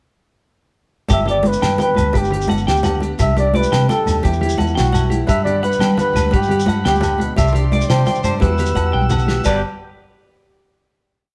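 A breathy, dark flugelhorn with vibrato carries a jazz-style, motif-based melody over a sunny, joyful highlife groove in 12/8 at 115 BPM in G major, backed by a twangy clean electric guitar with spring reverb in patterned eighth-note arpeggios, a fingerpicked steel-string acoustic guitar rolling full-bodied arpeggios with finger squeak, a round foam-muted bass in a syncopated figure, a dry damped 70s drum kit with a fat snare, background agogo bells and congas and a grainy shekere, with a reedy combo organ pad entering at 5.3 seconds, a drum fill at 8.9 seconds and a final Gmaj7 chord ringing from 9.4 seconds in the live-room sound of a whole short piece.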